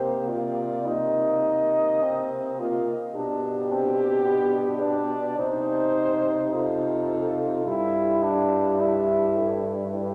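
Melancholic and elegiac, this passage from a longer classical work sets four French horns in a lyrical, rubato setting within a long, wet cathedral reverb. A dark-toned horn carries the melody up front with light vibrato and a soft attack, while a warm, distant, roomy horn sings the second line just beneath it. A mellow horn with a smooth top fills in the accompaniment in the background, and a close-miked bass horn with vibrato anchors the low end as the harmony moves from Cm7 through G/B and Cm to Em/G.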